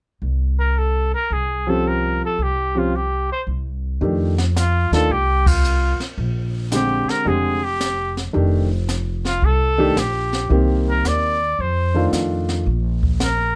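Woody pizzicato upright bass opens this swinging, playful small-group jazz excerpt at 111 BPM, soon joined by a clear, vintage-toned trumpet carrying the melody with light vibrato, soft attacks and scooped notes, and by a natural-sounding baby grand piano comping from 1.7 s over a rootless Bbm69/C. At 4.0 s the brush kit enters with airy dark cymbals, a high-tuned snare and a boomy kick as the tune settles into F mixolydian, moving through F13, Bb13, Cm7 and F6, with a band accent at 5.4 s. The near-dry sound keeps every player up front, and the piano drops out shortly before the bass, trumpet and drums finish.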